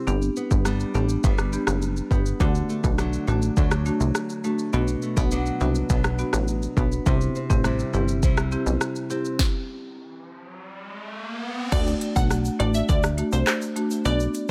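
A straight 4/4 dancehall groove at 103 BPM drives this sultry, hypnotic piece, built on an electronic afro-pop drum kit with a deep kick, sharp snare, crisp hats, rim click, handclaps, shaker and crash cymbal sitting up front. A punchy, funky analog bass with a sawtooth and pulse-wave tone and a fast, decaying filter pluck sits just as forward, while a close-miked marimba on rosewood bars adds a woody, full accompaniment over chords moving from G to D to C. A small, boxy nylon-string guitar plays fingerpicked arpeggios low in the mix, with finger squeaks audible. The chords give way to a stop at 9.4 seconds, and an electronic riser sounds from 10.2 seconds. At 11.7 seconds a glassy, crystalline wavetable pluck takes the melody through chorus and tape echo, joined by a bright, vintage egg shaker in the background, all in a dry sound with little reverb.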